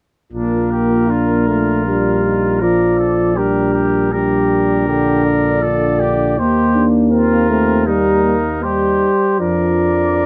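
Stately and warm, this excerpt from a classical brass quintet moves at 79 BPM in Bb major, with a mellow trumpet carrying the melody over a clear, soft-attacked second trumpet, a vibrato-tinged euphonium and a dark bass trombone, each sounding distant and roomy, while a vintage-toned French horn sits in the background as the chords pass from Bb through Gm/Bb and Cm7/Eb to Bb/F under light reverb.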